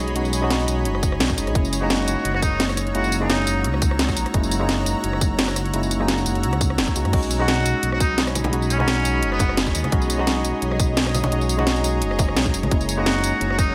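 A gently swung sixteenth-note groove at 172 BPM in 4/4 drives this lush, uplifting liquid drum and bass passage in B major, cut from a longer piece; the overdriven, up-front kit brings a cracking snare, bright hats, rim clicks, tambourine and crash cymbal, and a tight, overdriven electronic kick joins at 1.0 seconds. Underneath, a dark detuned saw bass rumbles deep and up front, its sustained, beating tone fast in attack. A worn, slightly out-of-tune tine electric piano, heard as if through built-in speakers, carries the accompaniment with tape echo, while a shimmering, ethereal pad holds slow-blooming, granular chords high above with chorus and an octave-up sheen. From 1.8 seconds a distant, roomy trumpet with a metal mute plays brief, buzzy, thin solo phrases in a classical style with light vibrato and tape echo. Soft-handed, compressed congas sit in the background from 8.4 seconds as the harmony moves between B69 and F#7 under a light digital ambience.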